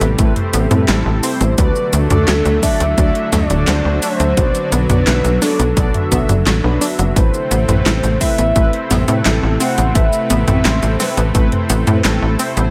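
Moody and nostalgic, this synthwave piece moves at 86 BPM in a straight 4/4 in A dorian, cut from a longer work, with chords running from Amadd9 through D and Bm and back to Amadd9. A soft octave-layered synth lead carries the melody, dark and round with vibrato, coloured by chorus, phaser and tape echo, and drops out at 11.0 seconds. Beneath it, a lush unison pad holds thick, detuned sustained chords in the background with chorus and sidechain pumping, while a very quiet analog pluck traces arpeggios and a mellow synth brass adds brassy, dark stabs with chorus. The tight sequencer bass sits up front, nasal and driving with a sawtooth bite and sidechain pumping. A pop drum kit of cabasa, handclaps, metallic hats, a fat snare and toms is overdriven with gated reverb, joined from 0.2 seconds by a punchy, overdriven electronic kick. The mix has light reverb and a faint mains hum.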